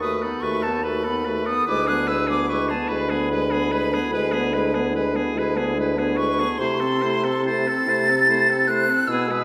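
A slow, rubato 12/8 lilt at 49 dotted-quarter beats per minute carries this warm, serene classical movement for wind quintet, cut from a longer piece, as the harmony passes from B7/D# through E7/D to Am/C at 6.6 seconds. An airy silver flute sings the expressive high melody with vibrato, and a bright oboe traces a second line. A smooth-topped French horn and a background clarinet fill in the accompaniment, while a mellow bassoon with vibrato sits up front in the bass. The five winds sound together across the full 9.4 seconds, bathed in the resonant reverb of a recital hall.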